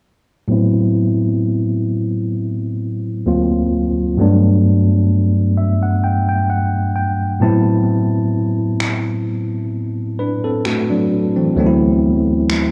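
A bright, bell-like tine electric piano opens this sensual, late-night contemporary R&B excerpt, its clean, up-front chords moving from Am69 through D7alt and Gmaj9 under a low-pass filter sweep, with a piano fill from 5.1 to 7.9 seconds, before analog electronic finger snaps, re-recorded in a large room, join at 8.8 seconds, the recording carrying the worn, warbling pitch drift of old cassette tape and light studio reverb.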